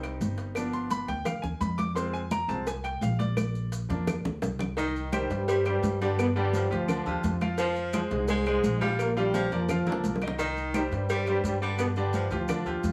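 A punchy, tight trombone section carries the melody from 5.1 s with light vibrato and plate reverb, after a distant, roomy baritone saxophone enters on a second line at 4.8 s. This fiery, driving salsa in C minor at 171 BPM is cut from a longer piece and opens with a brilliant, intimate baby grand piano taking a solo from 0.0 s, its action noise audible. Underneath, an up-front, woody pizzicato upright bass, thick-skinned damped congas, round low-tuned cowbell and bongos, and background dry claves and grainy maracas keep the groove going in a small room.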